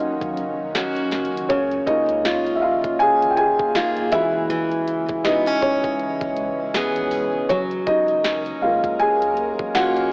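Over a swung sixteenth-note trap groove with a knocking kick, sharp snare and bright hats, this smooth, romantic contemporary R&B excerpt puts a soft, thick-felt muted upright piano up front alongside a full-bodied picked steel-string guitar playing arpeggios through tape echo, while an ethereal, detuned pad with chorus and tremolo and a round sub bass entering at 0.2 seconds sit in the background, the piano, guitar and pad all carrying a cassette tape color within an overall AM-radio home-recording sound.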